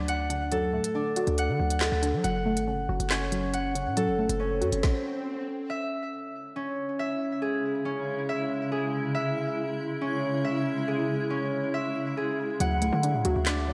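A fingerpicked concert harp rings up front through the whole piece, its arpeggios trailed by delay, setting a tense, cold tone for this drill-style hip hop cut at 139 BPM in a half-time feel, centred on C# phrygian. In the opening stretch a drill kit with a hard-clipped kick, woody snare, crisp hats and handclaps hits alongside a punchy, heavy 808-style bass with a sine body and noise layer, while a warbly, dusty pluck with a lo-fi, dark chorus tone fills in the accompaniment over D and F#m chords. A background swell rises from 4.5 seconds as the drums and bass stop at 4.8 seconds, leaving a gap before the harmony moves to C#m. From 7.2 seconds a bright, granular cloud pad spreads blurred, evolving sustained chords beneath the harp. The beat, bass and pluck return at 12.6 seconds on a D chord, and the whole mix sits in a dreamy hall reverb.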